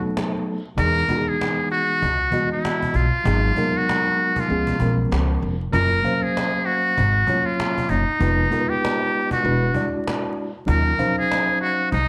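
Swung sixteenths drive this cool, smoky jazz-hop cut, where a buzzy, breathy trumpet with metal mute sings the melody up front with slapback echo over a mellow, clean tine electric piano, a distant, woody cajon played with soft hands from 0.2 seconds, and a pizzicato upright bass with steel strings entering at 0.8 seconds, the whole mix wrapped in light reverb and vinyl crackle.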